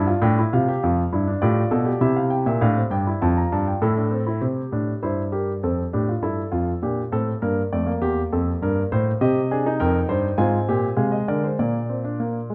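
Lively and stately, this classical piece is a baroque-style four-part fugue for solo grand piano, moving at 100 BPM in a straight 4/4. The warm concert grand sits up front with a deep bass, its voices spanning from E2 up to Bb5. Close, detailed microphones capture the instrument inside a moderate recital hall reverb that lends a sense of space. The harmony opens on F and passes through G7/F and C7 before returning to F, then a new section at 4.4 seconds wanders through Am7, Dm/F and Gm7. From there it darkens toward Cm and Fm/Ab before landing on Bb, as this brief portion of a longer work breaks off at 12.5 seconds.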